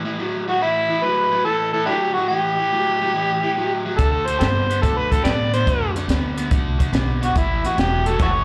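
Heard through a club's PA with light reverb, this short cut from a longer electric blues shuffle has the loose, roomy feel of a live gig. A dark, compressed overdriven electric guitar opens at 0.0 seconds with a picked riff in its low register, and the overdriven harmonica joins at 0.5 seconds to carry the melody up front, both sharing a slapback echo. The harmonica is the star: amplified and gritty, with light vibrato, tongue slaps and scooped notes delivered in a jazzy solo style. At 4.0 seconds a woody, growly pizzicato upright bass and a smooth, compact cocktail drum kit, with hi-hat, a high-tuned snare and a punchy kick, come in as the harmony moves from A7 to D7 before returning to A7. The swung eighths give the whole band a laid-back yet rollicking mood.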